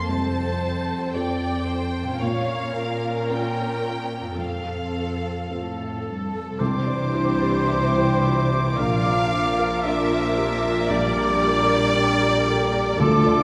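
Cinematic and tender, this slow, rubato passage in 4/4 at 56 BPM moves through F major in a moving mood, the Bb minor chord at 2.2 seconds casting a brief shadow. From the opening, two bowed violin sections carry the music. One sings the melody high above with focused vibrato, and the other traces a soft-attacked, expressive second line, while a lush viola section and a smooth, even cello section fill the middle and bass. Beneath them a felt-muted upright piano sits intimately in the background, its action noise audible, and a concert harp rings with fingerpicked arpeggios. A clear oboe joins with its own line at 5.5 seconds. At 6.6 seconds the second section opens on Cadd9 as a pure straight-toned flute, a mellow, very quiet clarinet, a punchy yet mellow French horn section holding chords, and a rich bowed double bass section all enter. Very quiet timpani struck with hard mallets add a dry, articulate accent until 8.2 seconds, and the whole orchestra blooms in the generous reverb of a recital hall before the fragment ends on Gm/Bb.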